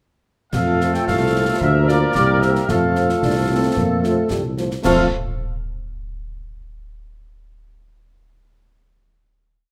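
A mellow, up-front tuba anchors this rousing, proud military-style march for wind band in F major at 111 BPM in 2/4, playing bass on the beats beneath a dark, distant trumpet section carrying the melody and a close woodwind section with vibrato adding a second line. A clear trombone section holds sustained chords in the background, a roomy French horn section joins at 0.8 seconds with after-beat chords, and a warm solo euphonium enters at 3.2 seconds to answer at phrase ends, while concert snare drum, concert bass drum and dusky clash cymbals keep a marching snare over a bass drum on the beat. The brief piece closes on a final chord from 4.8 seconds, all set in a moderate large-studio reverb.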